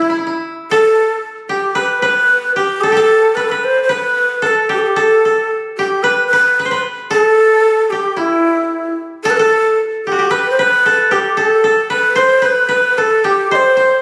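Soulful and hypnotic, this Arabic-style fragment moves in a straight 4/4 feel from its first moment. An end-blown ney carries the melody from 0.0 to 14.0 s, its reed-cane tone breathy and bright, close-miked and up front, with vibrato and tongued notes giving the line an expressive voice. Beneath and alongside it, a koto plays a second line across the same span in a similar register, its fingerpicked tone woody and dry and also placed up front, though lower in level than the ney. The pair sits in a moderate recital-hall reverb, and the sound carries the character of a phone recording made in the room. Cut from a longer piece, it offers a single continuous passage of intimate, trance-like playing.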